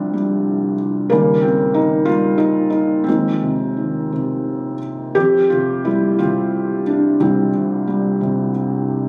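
A felt-muted upright piano, soft and mellow with its action noise audible up front, plays a tender, lyrical classical solo in 6/8 with rubato, moving through suspended and seventh harmonies in the low and middle register before settling back on its opening chord, all heard as a short fragment of a longer piece captured on a phone in the room with light club reverb and compression.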